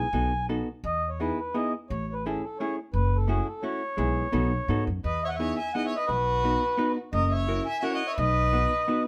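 A short cut from a longer piece, recorded in a moderate studio reverb, this bittersweet, whirling musette waltz in E major turns at 171 BPM in 3/4 with a lightly swung, rubato feel and tuning a touch below standard pitch. An up-front, reedy, airy accordion carries the melody over a dark, clean hollow-body jazz guitar and a woody, growly plucked upright bass, moving through Emaj7, Amaj7, F#m7 and B7 changes. At 5.0 seconds a single distant, bowed violin enters with a rich, expressive second line full of vibrato and portamento, playing until 9.0 seconds.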